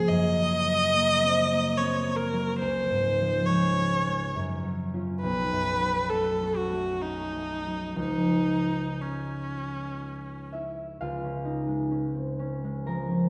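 Pastoral and luminous, this impressionist classical duo for viola and concert harp moves in an unhurried 3/4 at 58 to 72 BPM, its rubato feel letting the pulse breathe freely in D-flat major, tuned to A4 = 441 Hz. A single bowed viola carries the melody up front between Db4 and Eb5, its tone clear, smooth and even, colored by a gentle vibrato and heard close. The harp supplies the accompaniment across a broad span from Cb2 to Bb5, its bright, thumb-plucked acoustic strings ringing out just as prominently. The harmony drifts through lush colors, opening on Gbmaj7#11 before settling on Dbmaj7 and later passing through Cb9 to Dbadd9. A wet scoring-stage reverb with a 1.8-second decay bathes the pair in a spacious glow. Taken from a longer piece, the passage lets the viola fall silent at 10.5 seconds while the harp carries on alone to the close at 13.3 seconds.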